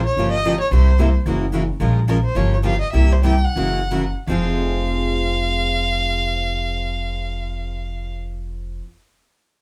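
Jazz manouche string swing in F minor, swinging and bittersweet, moves at 155-221 BPM in 4/4 and slows from 1.8 to 4.3 s before settling on an F minor chord, a short section cut from a longer piece. Up front, a single bowed violin sings the melody with vibrato, soft attacks and expressive portamento, while a woody, growly pizzicato upright bass, also up front, anchors the low end. Two picked steel-string acoustic guitars accompany from 0.2 s: one full-bodied jumbo with fresh, bright strings, the other sitting in the background with audible finger squeak, all captured live together in a small room with moderate ambience.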